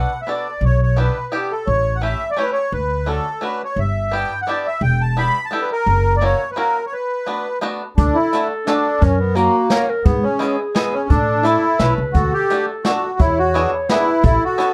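Nostalgic and bittersweet, this musette waltz sways in a lightly swung three and is cut from a longer piece. A reedy, sweet accordion carries the melody up front, its light tremolo tuning lending a dark, smooth color. Beneath it, a twangy, percussive bluegrass banjo played with fingerpicks and a woody, growly pizzicato upright bass with steel strings hold the accompaniment. After a break at 6.9 seconds, a new section begins at 8.0 seconds, where a mellow clarinet joins on a second line with a soft attack and classical poise. A brushed jazz drum kit with a medium-tuned snare and a boomy kick enters at the same point. Close, detailed microphones and light reverb keep the small ensemble intimate.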